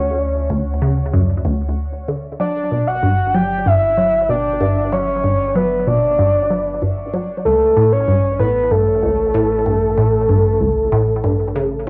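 In a straight, even 4/4 pulse, this expansive, luminous ambient fragment pairs a squelchy, resonant blip pluck riff, bright and up front with phaser and tape echo, against a full, octave-layered synth lead that carries the melody with chorus, vibrato and a dark, round sub-octave body. Underneath, a deep triangle-and-sine analog bass sits low in the mix with transformer saturation, and a filter sweep runs through the synth arpeggio the whole way. The harmony opens on a chordless stretch, moves to G5 at 2.4 seconds and settles on A at 7.5 seconds, all wrapped in a wet studio reverb and the soft grit of a home cassette recording.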